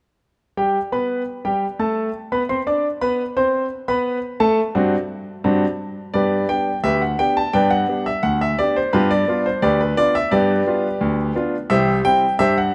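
A solo grand piano begins at 0.6 seconds, playing cheerful, playful ragtime in G major at 86 BPM in a straight 2/4. The piano sounds clear, intimate and natural, sitting up front with its action noise plainly audible, and it ranges from C2 up to D6. The first passage moves from G to D7, then a second passage starts at 6.1 seconds, returning to G before shifting to G7 and arriving on C. A moderate echo chamber reverb with a 2.3-second decay gives the instrument a sense of space around its close, detailed tone. This short piece is cut from a longer performance and ends at 12.7 seconds.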